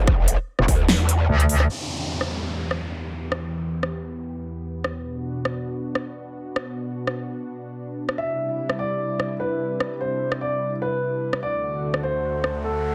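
A half-time 4/4 groove drives this aggressive, menacing fragment of heavy wobble dubstep. It opens on a drop, with a punchy electronic kick beside an up-front big-room dance kit, all huge snare, crisp hats and rim clicks. A saturated, growling bass with a formant-filtered wobble comes first, followed by a metallic FM wobble bass that sits even louder, and the kick falls away before the passage turns at 1.7 seconds. From there a lush, detuned sawtooth unison pad holds thick, warbling chords that pump against the sidechain under a filter sweep, while a downlifter trails off. At 8.2 seconds a dark, mellow baby grand piano adds a high melody through delay, and a riser closes the passage, with the layered drums keeping a tape-tinged sheen inside a light digital ambience.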